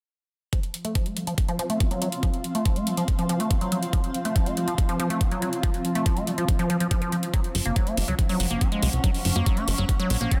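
A squelchy, resonant liquid acid bass leads this hypnotic, driving psychedelic trance excerpt at 141 BPM in F double harmonic, its square-wave riff running through a filter sweep from 0.5 seconds and colored by phaser, digital delay and sidechain pumping. A knocking electronic kick sits up front, joined by metallic electronic hi-hats, both carrying a touch of studio ambience in a straight 4/4. Behind them, a bright, detuned pulsing gated texture holds sustained chords with chorus and built-in reverb, while a cloudy, evolving granular pad drifts in at 1.3 seconds, blurred by a moving notch and pumping with the beat. At 7.5 seconds a punchy, funky plucky analog bass arrives up front, its fast-attack filter pluck decaying in a low register as the harmony shifts from F to Gb. Light digital ambience surrounds a dense, heavily limited modern master.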